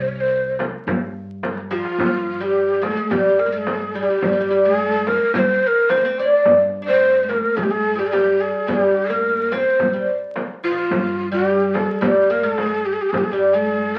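Soulful and hypnotic, this Arabic maqam ensemble piece in G maqam bayati moves at 108 BPM in a straight 4/4, cut from a longer performance and heard through the crackle of a very old 78 rpm record with a wet studio reverb. A breathy, mellow ney carries the melody up front with vibrato and an unsteady, tongued tone, over a thumpy gut-string upright bass, a very quiet clay-shell darbuka played with soft hands, and a deep, band-limited frame drum that enters at 0.6 seconds. During a drum fill that begins at 1.4 seconds, a bright, woody oud joins at 1.7 seconds as a plectrum-plucked second line, its double strings standing up front beside the ney.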